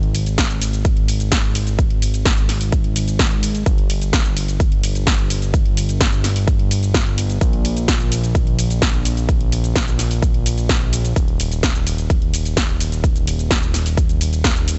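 Festival progressive house at 128 BPM in 4/4 with a straight feel, this uplifting, euphoric excerpt in Eb major is cut from a longer piece. A fat analog bass runs the full 14.8 seconds, its detuned sawtooth tone thick and up front, with a fast attack, sustained notes, a filter sweep and sidechain pumping, moving between Eb1 and Bb1. A big-room dance drum kit plays throughout with hi-hat, ride cymbal, shaker and a punchy, layered snare that sits up front. An electronic kick drum enters at 0.4 seconds and stops at 14.5 seconds, its punchy, layered hit the loudest of the parts. The mix is dry with little reverb and a dark top end, with nothing above 8 kHz.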